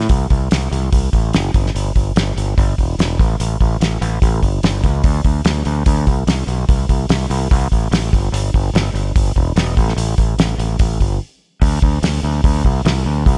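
A straight 146 BPM indie rock pulse in 4/4 drives this carefree, jangly excerpt, as a cloth-damped, thuddy acoustic drum kit with a fat snare, tight kick and hi-hat sits dark, dry and up front beside a growling, overdriven fingered electric bass ranging from E1 to D2, both playing throughout until a short break at 11.2 seconds leads into a new section at 11.6 seconds.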